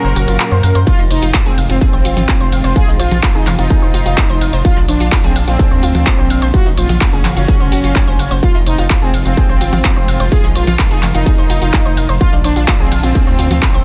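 Dark and driving, this melodic techno passage cut from a longer piece moves at 127 BPM in a straight 4/4 around F phrygian, cycling through Gb, Fm and Bb. It opens on a short break before the distorted electronic kick arrives at 0.9 seconds, punching up front with a large-room character, while an overdriven deep house kit of congas, handclaps, hi-hat and ride cymbal pumps against it. A gritty, aggressive synth bass with a saturated, evolving tone sits heavily underneath, and a round analog pluck spins arpeggios through chorus and digital delay. Over the top, a fat, brassy analog synth lead carries the melody with warbling vibrato, chorus and delay. A lush bowed string section holds sustained chords in the background, and the dense, heavily limited master keeps the sound dry and tight.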